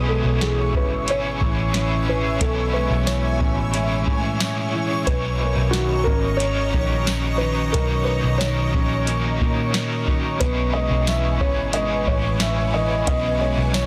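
A felt-muted upright piano carries a soft, intimate melody through tape echo in this floating, ethereal dream pop excerpt at 90 BPM, over a round, foam-muted picked bass, a mellow electric guitar's fingered arpeggios, a raw garage guitar with overdrive, tremolo and lush chorus, a blurred granular cloud pad holding sustained chords, and a soft vintage rhythm box with deep kick, crisp snare, metallic hats and tambourine entering at 0.4 seconds, all moving from Amaj9 to Bmaj9 and back within a dense, heavily limited master.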